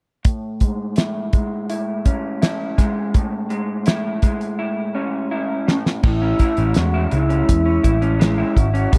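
A dusky, slightly broken-up electric guitar, played through a small old amp, opens this sunny, dreamy indie and bedroom pop excerpt, sitting up front on an A major seventh chord. Its tone carries analog chorus, a warbly pitch drift and a low-pass filter, and a filter sweep runs across it through the first section. A damped 70s drum kit plays alongside it at a relaxed 83 BPM in straight 4/4, with a fat snare, tight kick and dark, rolled-off cymbals, and a fill at 4.6 seconds carries it into the next section. A pure, mellow alto flute with a wooden head enters at 5.7 seconds, distant and expressive, its tongued, vibrato-laden melody touched with subtle chorus. At 6.0 seconds a round, foam-muted picked electric bass joins up front as the A major seventh chord returns. The dry, close, 1970s-style studio sound and the small room ambience give the whole a lo-fi intimacy.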